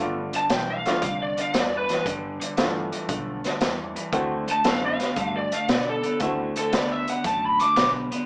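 Heard through a small-speaker sound in a snug room, this short cut from a swaggering, rollicking electric blues shuffle swings at 116 BPM in 4/4, moving from G7 to D7 at 4.1 seconds. Up front, a gritty, saturated garage drum kit pumps with a punchy kick and a medium-tuned snare, while a lo-fi lead guitar through a small cranked amp carries the overdriven, picked melody from 0.4 seconds. Beneath them, a slightly broken-up rhythm guitar with spring reverb plays the riff, a woody, slightly detuned upright piano comps with short sustain, and a dark, round, foam-muted electric bass sits in the background.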